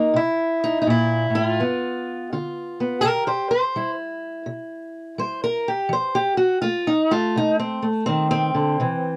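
A fingerpicked steel-string acoustic guitar opens this short cut of acoustic country blues, its dark, boxy parlour tone sitting up front over a swung 4/4 feel as the harmony moves from C7 to G7. At 3.0 s the guitar takes a solo that runs to 9.2 s, passing through C and F7 in a laid-back, rollicking mood. The sound is dry and close, in the manner of a 1970s studio recording, touched with light reverb.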